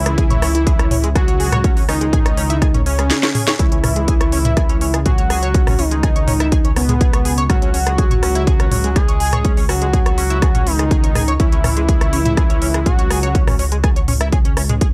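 Cinematic and melancholic, this melodic techno excerpt sets a heavy, up-front electronic kick under a techno kit with a cracking snare, smooth sidechain-pumped hats, rim clicks, toms and a brief fill at 3.1 seconds, while a deep, rumbling detuned saw bass pumps beneath tight, nasal sequenced arpeggios roughened by 12-bit sampler grit, chorus and tape echo, and a fat, mellow analog lead with vibrato, chorus and tape echo carries the melody until 13.3 seconds, all in a dry, gritty hardware recording with transformer saturation.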